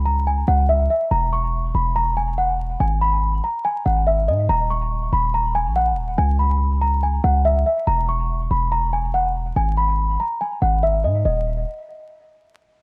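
From the first moment, a small celesta and a hard-hitting 808-style bass sound together, setting a cold, menacing hip hop mood at 142 BPM in 4/4 with a half-time feel, tuned slightly below standard pitch at A4 = 439 Hz. The celesta carries the melody between Eb5 and C#6, its bell-like, delicate, mellow tone struck with soft felt hammers and shaped by a low-pass filter and tape echo. Beneath it, the 808 bass sits just as far up front, punchy and heavy, a sine tone with a noise layer, a fast attack and a decaying tail. The harmony moves through dark chords such as Dbm, Abm and Db7(no3), alternating with bare power chords on E and Eb. The mix is echo-heavy with light reverb and a layer of vinyl crackle. The harmony falls away at 11.3 seconds, the celesta stops at 11.4 seconds and the bass at 11.6 seconds, in this short section cut from a longer piece.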